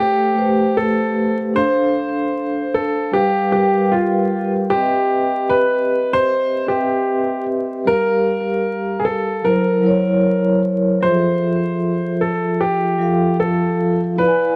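A clear, woody upright piano carries the melody up front, its audible action noise and long sustain softened by a low-pass filter and an analog delay. A vibraphone played with soft mallets accompanies it throughout, mellow and ringing with a medium motor vibrato, colored by cassette tape and its own low-pass filter, over a chord path that runs from Am9 through Gm7 and F#7#11 to Fmaj7. This nostalgic, hazy hip hop passage sways at 76 BPM with a swung 16th feel, set in a small, wet room with vinyl crackle and a dark production.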